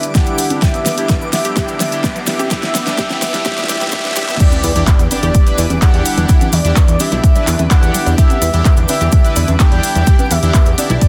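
A punchy, overdriven electronic kick drives this bittersweet progressive house excerpt at 127 BPM in E minor, joined by a fat-snare deep house kit with handclaps, hi-hat and crash, plus a grainy cabasa and tape-warm congas and bongos in the background. Over a lush unison pad on Em7, an expressive, dark synth lead with chorus and dub echo carries the melody while a bright unison pluck arpeggiates, smooth supersaw stabs pump against the kick, and a twinkling granular texture shimmers faintly up high. A build-up with filter sweeps, a drum fill and a riser gives way at 4.4 seconds to the drop, where a thick, detuned analog bass enters moments later under an impact, all within a dense, heavily limited master.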